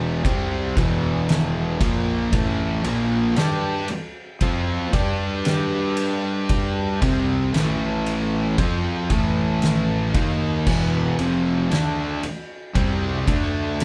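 Sludgy and heavy, this stoner and doom metal fragment, cut from a longer piece, has a band playing live in one room with light reverb, grinding through a riff over Em, A5, G5 and D5 chords. Two fuzz guitars carry the riff: one bright, compressed and up front, the other thick and warm in the background, both double-tracked and distorted. Beneath them, a growly, punchy fingered bass with overdrive sits back in the mix, while an oversized low-tuned drum kit enters at 0.2 seconds, up front and saturated, with a boomy kick, fat snare, gritty texture and dark crash and ride cymbals.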